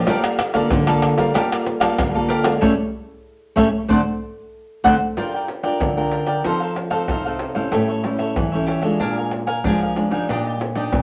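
Bittersweet yet lively, this excerpt from a longer samba and choro piece moves at 94 BPM in a straight 4/4, starting in D minor before shifting to G minor at 5.2 seconds over chords such as Gm9, A7, D7 and Ebmaj7/Bb. A full-bodied, fingerpicked classical nylon-string guitar sits up front with audible finger squeak, joined by a crisp, picked cavaquinho and a second fingerpicked nylon-string guitar holding the bass in the background until it stops at 5.0 seconds. Close, dry tube shaker, deep surdo, pandeiro and tamborim played with hard hands drive the groove, with a band accent beginning at 2.6 seconds, all set in a wet studio reverb.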